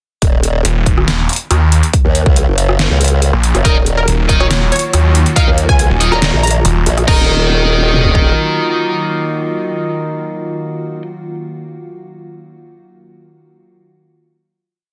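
Heavy wobble dubstep in Eb minor at 140 BPM with a menacing, aggressive half-time feel: an overdriven electronic drum kit with a punchy kick, toms, deep snare, metallic hats, rim clicks and crashes drives the drop from 0.2 s beneath a chorused formant-sweep wobble bass, joined at 0.6 s by a growling, detuned sawtooth bass in chopped phrases. From 3.6 s a lush unison pluck riff with tape echo and sparse power-chord stabs from a bright, picked electric guitar arrive, joined by a morphing wavetable pad with sidechain pumping that rings alongside them through the final chord from 7.1 s in a dense, heavily limited, dry mix.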